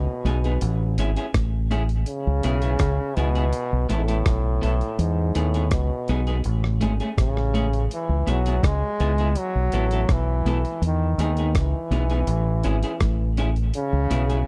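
A deep, fingered dub bass sits up front with a dark, round tone, anchoring this uplifting roots reggae excerpt at 82 BPM in straight 4/4 and E major. Over it, a solo trombone carries the melody in a clear, punchy pop style with vibrato, set back in a roomy space and trailed by tape echo. Entering at 0.3 seconds, a bright, twangy electric guitar plays picked, compressed accompaniment that is slightly broken-up and also feeds into tape echo. A dusty, sampler-style drum kit, gritty and compressed with a thumpy kick, hi-hat and rim click, also comes in at 0.3 seconds and stays close in the mix. The harmony cycles through Emaj7, Amaj7, C#m7 and B7sus4, giving a warm, gently hopeful feel. The dry, close sound recalls a 1970s-style studio, with little reverb.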